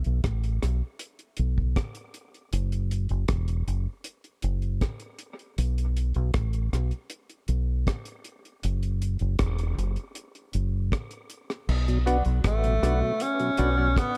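A tight, dry reggae drum kit and a round, punchy fingered electric bass open this deep, spacious dub reggae excerpt at 79 BPM in 4/4, both sitting up front in an echo-heavy mix with light small-room ambience. The drums use kick, hi-hat, rim click and crash cymbal with a rolled-off top. The bass holds low between E1 and B1 beneath a brief Asus2 before the harmony drops away into an open, chordless stretch. At 11.9 seconds a mellow tonewheel organ arrives with chorus vibrato, slow rotary speaker and dub echo, as the chords settle on B minor. Hollow, nasal organ stabs with a fast attack and dark chorus colour join, trailing off in dub echo. A breathy, whispered tenor saxophone then enters up front at 12.5 seconds with vibrato and scooped notes, its intimate voice floating through the echoes as the piece is cut off.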